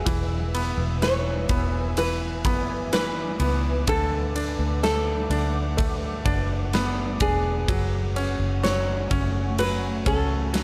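A slow, straight 4/4 pulse at 63 BPM from a huge arena drum kit, with a punchy kick, bright cymbals and a pumping hall sound, anchors this melancholic, longing pop ballad fragment, where a dark, round, foam-muted electric bass sits up front beneath a brilliant, short-sustained grand piano, a fingerpicked flamenco guitar carries the melody with audible finger squeak, and an ethereal, detuned pad with ensemble chorus and its own reverb hovers mellow in the background over chords moving from E to Bm7/D to F#madd9.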